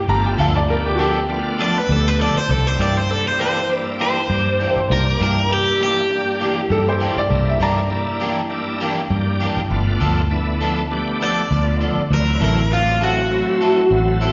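Swaggering and laid-back, this short blues excerpt moves at 100 BPM in 4/4 with a light sixteenth-note swing, cycling through G9, C9 and D9 chords. An overdriven semi-hollow guitar carries the melody up front, its picked hollow-body tone colored by phaser and slapback echo, playing until 7.6 seconds and returning at 11.2 seconds. A clear, woody upright piano, slightly detuned with short sustain, adds a second line in brief appearances, most notably between 6.7 and 9.4 seconds. Underneath, a bright tonewheel organ shouts steady accompaniment through a slow rotary speaker with key click, chorus vibrato and light overdrive, while a dark, foam-muted electric bass sits round and punchy at the front. An electric guitar at the edge of break-up adds stabs with ensemble chorus, and the whole performance comes across like a live gig heard through a venue's PA, with plate and recital hall reverb and a dulled top end.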